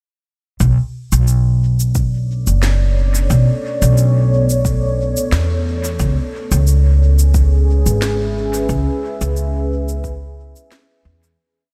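A thumpy, up-front upright bass with a woody, gut-string pizzicato tone anchors this hazy, deep ambient dub piece from 0.6 seconds, alongside a soft, tape-warm electronic kick and a sparse electronic cabasa and snare steeped in dub echo, while a dark, detuned sawtooth pad with chorus and a sub octave drifts in at 2.5 seconds, moving slowly from Bm9 to C#m7 before the piece fades out from 7.8 seconds.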